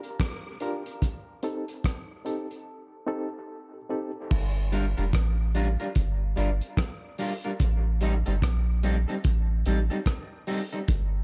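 Dub reggae at a slow 73 BPM with a swung, spacious and meditative feel: a muffled, cloth-damped drum kit with dark cymbals, tight kick and rim clicks runs throughout, while a barky, reedy electric piano with overdrive, fast tremolo and dub echo stabs through the opening break until 4.1 seconds, after which a deep, round sub bass enters at 4.3 seconds and a twangy guitar at the edge of break-up adds chorus-washed, echoing accompaniment over Gm7 and Am7b5, all in a dark, small-room production.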